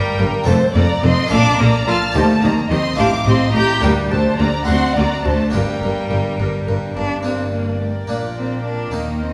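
Classical, baroque-style concerto movement in G minor at 71 BPM in a straight 6/8, dramatic and driving, cut from a longer piece. A solo cello carries the melody with expressive vibrato, soft attacks and portamento, while a focused violin section also plays the melody high above and a second violin section plays a smooth-topped second line. A bright harpsichord accompanies from the start, with the distant viola section, the cello section and a dark, woody double bass section joining at 0.2 seconds in a reverberant recital hall heard from further back.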